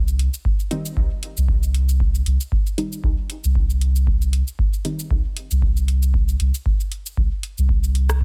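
A dense, heavily limited, nearly dry mix carries this cavernous, hypnotic dub techno excerpt in C minor at 116 BPM with a 16th-note swing, where a round, soft sub bass pumps up front on C2 from the start, a booming analog drum machine adds metallic hi-hats, cabasa and rim clicks from 0.1 seconds, a deep, tape-warm electronic kick lands up front from 0.5 seconds, and a muted, detuned sawtooth chord stab with filter sweep, chorus, phaser, sidechain pumping and dub echo plays between 0.7 and 5.0 seconds over a single Cm chord.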